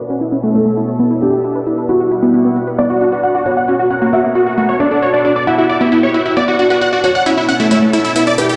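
A straight 4/4 pulse at 134 BPM drives this bittersweet, euphoric uplifting trance passage in B minor, cut from a longer piece, where an electronic hi-hat, tape-warm and recorded again in a small room, sits under a punchy, detuned unison pluck arpeggio with tape echo, a thick, warbling pad holding chords with chorus, and a mellow, felt-muted upright piano playing a second line through delay. At 2.8 s a huge, bright supersaw lead takes the melody up front with tape echo, joined by a very quiet grand piano playing a second line, while filter sweeps run across the drums and the arpeggio over chords such as Emadd9/B and F#/B above a held B. The whole sounds as if played on a big system in a bare stone room, bathed in lush hall reverb and dulled by a low-pass filter.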